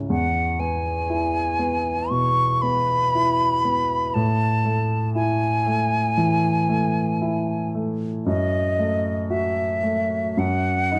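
A baby grand piano opens this melancholic, elegiac fragment of a romantic classical duo, its natural, long-sustained accompaniment joined at 0.1 seconds by an airy silver concert flute carrying an expressive melody with vibrato, a soft attack and lifted highs, both up front in a rubato 4/4 under light reverb and a dark, warm production as the harmony passes from E through A5 and F#m to D#m/F#.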